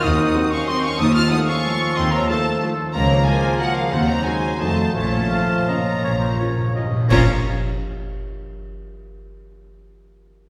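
A rich, focused violin section carries the melody high above this dark, sweeping orchestral ballroom waltz in Bb minor, moving in a rubato 3/4 at roughly 158-201 BPM. Cut from a longer piece, the passage opens with a second violin section adding a smooth, even line in the background, alongside a hollow concert flute, a soft-edged oboe and a bright, vintage-toned clarinet, each playing its own supporting line. Mellow French horns hold sustained chords with a very quiet, roomy trombone section. A mellow bassoon and a lush viola section fill the accompaniment, while a ringing concert harp plays arpeggios and bowed cellos and double basses give a full low end. Timpani with soft mallets enter at 4.9 seconds with a round fill, joined by a cymbal swell, bright clash cymbals and concert bass drum, before the band strikes an accent at 7.1 seconds. The harmony turns through diminished and dominant chords back to Bb minor, and a wet scoring-stage reverb places the orchestra further back in the room.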